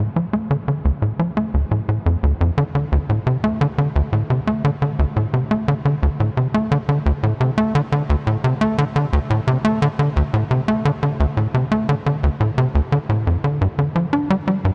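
Ambient piece in D minor at 87 BPM in a straight 4/4, expansive and mysterious, built from a single tight sequencer bass playing alone throughout, ranging from D2 to D4. The bass is punchy and nasal, with a sawtooth-and-square edge, a fast-attack filter pluck and an evolving, driving character, sitting up front with tape echo. A huge ambient reverb with an 8.4-second tail surrounds it, and a brief new section arrives at 13.6 seconds before this fragment of a longer piece ends.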